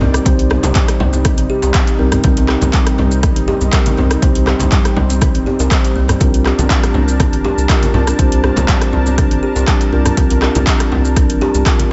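Earthy and warm, this afro house section at 121 BPM in C dorian, cut from a longer piece, moves from Cm7 to Gm7 at 6.2 s, with woody, ringing kalimba arpeggios and mellow electric piano stabs trailing dub echo, a smooth, detuned sawtooth pad sustaining chords in the background, a round, dark analog bass thickened by tube saturation, very quiet congas and a deep djembe with metal rattles, and a deep house kit of metallic hats, handclaps, rim click and shaker that shares overdrive with a punchy electronic kick, while the pad, kalimba, piano and bass pump to the sidechain inside a dull digital ambience.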